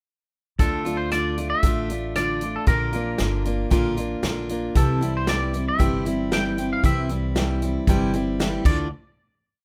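This honky-tonk and classic country piece feels lonesome and heartbroken, moving at a straight, steady pace through one short verse that begins at 0.6 seconds and closes with a final hit at 8.9 seconds. A twangy electric guitar carries the melody with clean, picked, motif-based song phrases in a bright upper register. Beneath it, a full-bodied jumbo acoustic guitar sits up front, strumming eighths in open chord shapes as the harmony moves from D minor through B-flat and C before settling back on D minor. A woody, thumpy upright bass plays pizzicato in a two-beat root-and-fifth pattern with walk-ups, while a natural studio-room drum kit lays down a country two groove with punchy kick, medium-tuned snare, rim clicks, hi-hat and crash. Light reverb and a rough home demo mix give the whole piece an unpolished, intimate character.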